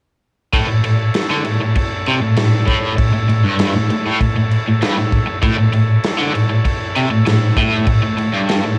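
A small-room home recording on cassette carries this rowdy, swaggering garage rock fragment in A major, moving at 98 BPM in a straight 4/4 and resting on an A chord throughout. Up front, a crunchy, double-tracked overdriven guitar plays a low riff with harmonic tremolo, while a raw acoustic drum kit with a punchy kick, a medium-tuned snare and a crash cymbal sits close, its gritty tape saturation and rolled-off top giving it a dark edge. Behind them, a buzzy vintage combo organ holds clean sustained chords from 0.5 to 8.8 seconds.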